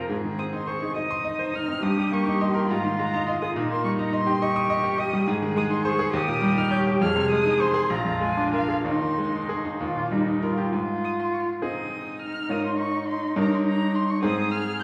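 Heard from further back in a reverberant recital hall, this excerpt from a quick classical-period movement for piano trio has a graceful, cheerful character and flows freely in six-eight metre with rubato. A bright baby grand piano sits up front, providing a brilliant, polished accompaniment with short sustain that ranges from deep bass notes to high sparkling ones. At 0.4 s a muted violin takes the melody high in its range, its con sordino tone dark and veiled, with vibrato, a soft attack and a smooth top. Beneath it, a muted cello carries a second line in a narrow middle register, sounding distant and shadowy, with vibrato and portamento slides. The harmony settles into a major key early on, circles through tonic, dominant-seventh and minor-seventh colours, and at 10.7 s opens into a new passage that returns home by the end.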